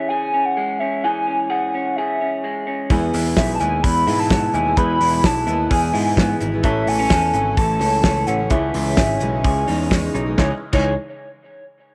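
A warbly, vintage lead with chorus and vibrato sings a nostalgic melody over twangy, slightly broken-up arpeggios from an electric guitar through a small old amp, opening this bittersweet, wistful stretch of jangly indie pop in C# minor at 128 BPM in a straight 4/4. At 2.9 seconds the band joins: a cloth-damped, thuddy drum kit with a fat snare and dark cymbals sits up front, a growly picked electric bass anchors the low end, and very quiet layers of fingerpicked steel-string acoustic guitar, round electric-piano-like synth keys and a swirling, phased analog pad fill in the harmony. The chords move from C#m to E, then A, and settle on C#madd9, all framed by light reverb and small room ambience in a piece that is cut from something longer.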